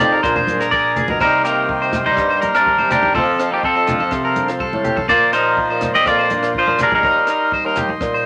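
Over a straight 4/4 groove at 124 BPM in C minor, this danceable highlife guitar band excerpt features a bright, twangy clean electric guitar up front, taking a solo turn in the opening 1.2 seconds and carrying the melody; a second clean guitar with vibrato effect plays accompaniment, a slightly broken-up guitar picks arpeggios, a buzzy vintage combo organ holds background chords, and a mellow, distant bassoon supplies the bass line; a compact cocktail drum kit with punchy kick and dark cymbals pairs with thick-skinned congas played with soft hands, while a raspy, growling tenor saxophone enters at 1.2 seconds with a second line, all set in a wet small-room reverb.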